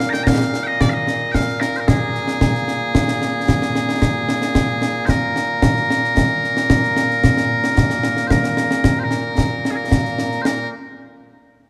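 Set in a moderate concert-hall reverb, this short cut from a longer piece of ceremonial, stirring Scottish pipe music moves at 112 BPM in a straight 4/4, with loud, piercing, continuous solo bagpipes carrying the melody up front from Bb2 to Bb5 while acoustic concert snare and bass drums, edged with bright cymbals and a small-room character, sit equally forward and play together with the pipes from the opening until about 10.6 seconds.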